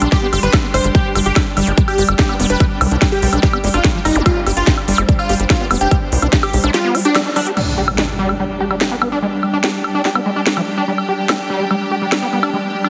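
Psychedelic trance at 145 BPM in G major, alien and driving, opens on a drop where a punchy electronic kick, a techno kit with cracking snare, smooth hats and woodblock, and a tight saturated sequencer bass push up front beneath a squelchy, screaming distorted acid riff with dub echo, a detuned supersaw stab melody, a faint nasal vowel-sweep wobble bass, a pulsing tempo-synced gated texture and clear bowed strings in the background, all in lush hall reverb with heavily compressed radio-style sound, until the kick and bass drop out around 6.4 to 6.7 s and an electronic zap and impact at 7.6 s usher in a section where a filter sweeps the synth texture.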